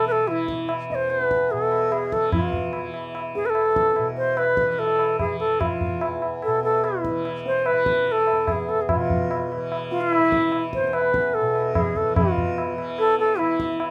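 A bright, reedy bansuri sits up front with a pure, straight, tongued tone, carrying the melody from E4 to D#5 over a softly plucked, buzzing tanpura drone that shimmers beneath it. Low-tuned tabla with a short ring adds percussion at 146 BPM in a straight 4/4, and a light reverb frames this meditative, serene Hindustani classical excerpt. The passage shifts into a new section at 12.2 seconds before the cut at 13.9 seconds.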